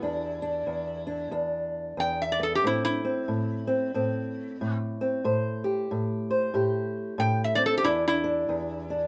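Acoustic country blues with a smoky, soulful mood at 92 BPM in a swung 4/4, this short cut from a longer piece sets a bright, metallic, nasal resonator slide guitar played with fingerpicks up front on the melody, over a dark, woody, boxy old ladder-braced acoustic guitar fingerpicked on aged strings, moving from Em7 to Am7 at 2.6 seconds and back to Em7 at 7.8 seconds in light reverb.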